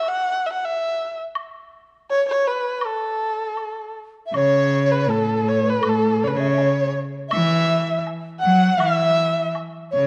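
Festive yet pastoral, this short cut from a longer Chinese traditional chamber piece unfolds at a rubato 81 BPM in 2/4, with a dark, woody erhu carrying the melody up front with vibrato and portamento from the opening, a close, dry woodblock sounding in the background from 1.4 s, and at 4.3 s a bright, intense bowed cello and a hollow, airy large dizi with a buzzing membrane joining as second lines, set in a moderate stage reverb with a dusky production.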